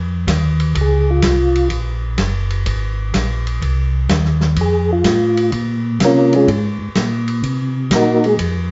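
The sound is set back in a wet studio room with a 0.8-second reverb tail and a dulled top end, giving this fragment of a longer piece a hazy, late-night feel. It is a bluesy soul jazz organ trio in Bb minor at 126 BPM, in a swung 4/4. A round, dark tonewheel organ carries the bass line from the first moment, treated with chorus vibrato and a slow rotary speaker. A dry, mid-forward acoustic drum kit with a punchy kick, a medium-tuned snare, hi-hat and ride joins at 0.3 seconds. A second tonewheel organ, soft and flute-like with a percussive second-harmonic attack and the same slow rotary and chorus vibrato, plays a brief melodic phrase from 0.8 seconds and returns at 4.6 seconds, sitting up front and slightly louder than the rest. Underneath, the harmony moves through Bbmadd9, Gb, F7, Bbm9 and Cm7b5.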